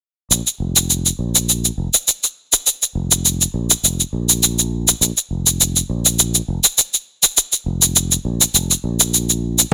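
At 0.3 seconds a sustaining fretless electric bass and a faint shaker begin together, setting up a relaxed, smooth sunset chillout groove at 102 BPM in a straight 4/4. The bass carries the piece, sitting low between F1 and Bb1 with a growly, direct and amped tone that tube saturation thickens further. Behind it, the electronic shaker is barely audible, its produced sound carrying a tape-warm softness. The room itself adds little reverb, yet the overall mix leans heavily on echo, giving the sparse arrangement a floating, spacious quality. This short fragment, cut from a longer piece, holds one unbroken section until the bass stops at 9.6 seconds and the shaker at 9.7 seconds.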